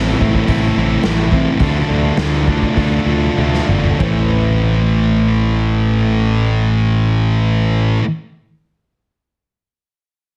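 Quiet-loud alternative rock in A minor with a dark, cathartic mood, moving at 94-110 BPM in a straight 4/4 and slowing down over the first 4 seconds, cut from a longer piece. A thick, fuzzy distorted guitar sits up front playing a picked riff, while a fingerpicked steel-string acoustic guitar with a woody, old-strings tone weaves arpeggios in the background. A growly, overdriven fingered electric bass fills the low end. A raw garage drum kit, saturated and gritty with a punchy kick and a rolled-off top, plays from 0.2 to 4.2 seconds in the background, closing with a fill at 3.4 seconds. The chords move from Am to Dm, then settle on Amadd9 at 4.0 seconds, and the whole mix carries a heavily compressed, radio-like sound with light reverb.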